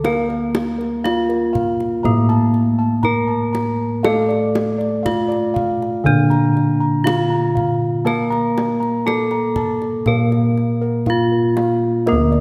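Hypnotic and stately, this Javanese gamelan excerpt moves at 60 BPM in a straight 4/4, with an up-front bronze metallophone ringing out the melody under a bright horn mallet while a second, darker metallophone struck with a wooden mallet carries the accompaniment beneath it, bossed gongs with a round, beating tone supply both high arpeggios and a low bass line, and a tight, saturated kendang played with hard hands sits quietly in the mix, all five parts sounding throughout and bathed in a lush concert-hall reverb.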